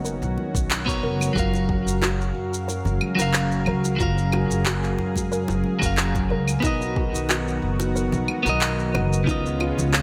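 Sunset chillout at 91 BPM in F# major, sunny and smooth, this ten-second cut from a longer piece drifts over Bmaj7 and F#maj7 chords before touching C#9 at 9.3 seconds, with a gentle 16th-note swing and a bright 1980s-style digital sheen under a moderate plate reverb. Up front sit a clean, compressed picked electric guitar with digital delay and a woody, growly pizzicato upright bass with tube saturation, while a lush, detuned sawtooth-and-square unison pad with chorus holds slow-attack chords and a soft, round filter pluck with ensemble chorus and delay arpeggiates in the background. The rhythm comes from an up-front layer of electronic shaker, handclaps and claves with gated reverb, a deep electronic kick entering at 0.5 seconds, and very quiet, bright bongos and congas played with hard hands.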